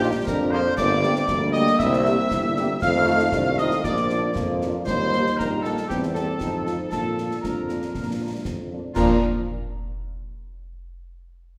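Proud and spirited, this military-style march for wind band moves in a straight two-beat stride, with a mellow cornet carrying the melody with light vibrato and a soft, distant attack in a wet recital hall. Behind it sit a clear woodwind section, a hollow wooden piccolo up high, a euphonium on second lines, a very quiet French horn section, and trombones holding warm sustained chords, while a tuba sits up front on the bass. Concert snare, bass drum and dark clash cymbals join at 0.3 seconds, and the euphonium drops out at 8.7 seconds, just before the passage turns to a new section at 9.0 seconds.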